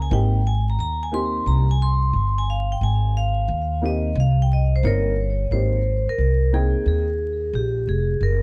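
A cool, smooth jazz-hop groove opens on an Abmaj9 chord, with vibraphone, upright piano and upright bass all sounding from the start at 89 BPM in 4/4, swung on the sixteenths in Ab major. The vibraphone, struck with medium hard mallets and its motor off, carries the melody up front with a metallic, ringing tone touched by tape echo, taking a solo through the first 5.5 seconds. Beneath it, a mellow, worn upright piano supplies intimate accompaniment, slightly detuned and carrying audible action noise, before dropping out at 7.0 seconds. The pizzicato upright bass sits prominently in the mix with a woody, growly steel-string sound that anchors the low end. Light reverb, vinyl crackle and a dark, warm production give this fragment of a longer piece its mellow character as it moves into a new section and runs to 8.4 seconds.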